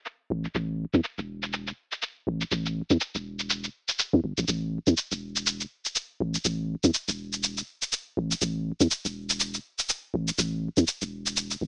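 This minimal techno excerpt moves at 122 BPM in 4/4, with a 58% swing on the sixteenths and a tuning set slightly low at A4 = 436 Hz. The mood is sparse and clinical. An electronic, analog-sounding shaker sits up front from 0.1 seconds. It is overdriven, with low-pass filtering that dulls its percussion, snare and hat elements into a gritty, muffled texture. A punchy sub bass enters at 0.3 seconds, also up front, and stays in the deep register between E1 and E2. Its sine tone has a fast, pitch-dropping attack that settles into a sustained, mellow body. The dry, nearly reverb-free mix carries a boxy AM radio character, and the piece runs as one continuous section cut from a longer work.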